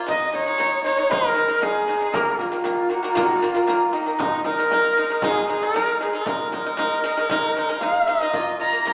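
Windswept and vast, this short Mongolian folk excerpt sets a rich, husky horsehead fiddle up front on the melody, its bowed line sung with vibrato, biting focus, portamento and a smooth top, touching Bb5 at 8.3 seconds. A bright, percussive pipa plucked with fingerpicks spins arpeggios beneath it, while a deep, large frame drum struck with hard hands sits low in the mix. The whole is heard in a reverberant recital-hall space with a small-speaker quality.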